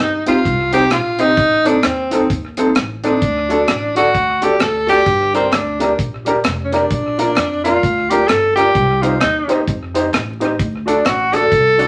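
Mischievous and energetic, this swung ska cut at 130 BPM puts a warm tenor saxophone solo with light vibrato up front over pizzicato upright bass on woody gut strings, slightly detuned upright piano stabs, a dark, clean electric guitar in the background and a dry reggae drum kit with tight kick, hi-hat, rim click and tape echo, while very quiet crisp group handclaps join at 5.5 seconds, all under vinyl crackle and a wet studio reverb as the chords move from Cm through Adim, D, Gm and Bb.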